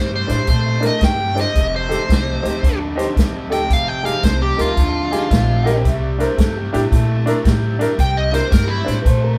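A swung shuffle at 112 BPM in 4/4 drives this short, soulful and gritty electric blues cut in C mixolydian. A vintage acoustic drum kit with a punchy kick and medium-tuned snare pairs with an upright bass whose plucked steel strings sound growly and woody. A biting overdriven guitar picks a low riff bathed in spring reverb, while a bright, up-front lead guitar with smooth overdrive and slapback echo carries the melody. A slightly detuned upright piano adds present, short-sustained accompaniment, and from 5.6 s a second, darker upright piano brings in a mellow line with long sustain. The band plays live in a small room as the harmony moves from C9 through F7sus2 and F7(no3), returning to C9 at 5.8 s.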